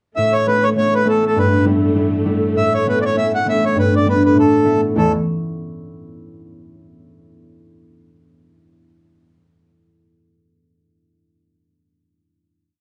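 A reedy accordion carries a cheerful, rollicking Celtic reel melody at 200 BPM in A mixolydian with a light swing, over fingerpicked, ringing concert harp bass notes and chord figures and a rich, bowed string drone with vibrato in the background, all in a dark, reverberant studio sound that closes on a final A chord at 5.0 seconds.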